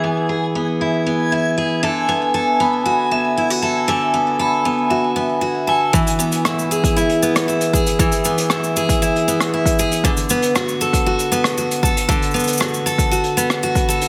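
Folktronica at 117 BPM in 4/4 with a straight feel, this delicate, hopeful passage in E mixolydian moves between E and D6 chords. It opens with bright, full-bodied picked steel-string acoustic guitar arpeggios up front, run through a low-pass filter sweep and delay, over a dreamy, detuned reversed texture swelling in the background, and a ringing, metallic vibraphone with hard mallets and slow motor vibrato joins with a delayed second line at 1.8 seconds. From 5.9 seconds a deep, overdriven electronic kick and a dark, smooth brushed jazz kit with cabasa, hi-hat and rim click carry the groove under the guitar, all within light reverb, in a short cut from a longer piece.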